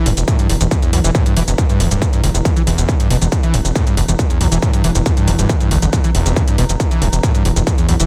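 Relentless and intense, this short cut of driving peak-time techno pits a squelchy, screaming acid riff, distorted and run through chorus, cassette-tape grit and tape echo, against a gritty, saturated sawtooth bass and an overdriven, up-front distorted kick that enters at 0.3 seconds, while layered electronic hi-hats and shaker pump beneath and an eerie, metallic FM drone warbles in the background, all in a dry room over a sustained E minor chord.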